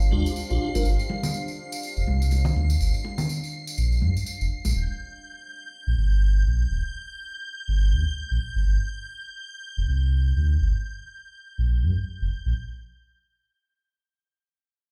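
Moody, smooth deep house at 123 BPM in G minor, cut from a longer piece, where a deep, full sine sub bass with octave sits up front under shimmering vintage string-machine violins, a dark detuned ambient pad with chorus and built-in reverb that fades out by 4.8 s, a brief lightly overdriven tonewheel organ stab with key click and slow rotary speaker, and thick-skinned congas with a jingly tambourine that both drop out at 4.7 s, all heard as if played on a big sound system in a bare stone room.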